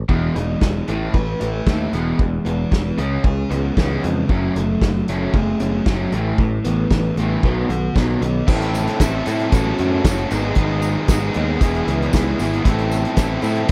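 Carefree and jangly, this indie rock excerpt moves at a straight 4/4 gait in a small room, with a growly, direct picked bass and a loose, roomy drum kit whose dark cymbals and tight kick sit up front. Two overdriven guitars play riffs side by side: a raw, bright garage guitar and a crunchy, warm one bathed in lush chorus and tape echo. Chords drift from Emaj7 through C#m7 and F#madd9, then shift to Am at 8.5 seconds and on to G#m, while a jingly tambourine slips into the background just after the change.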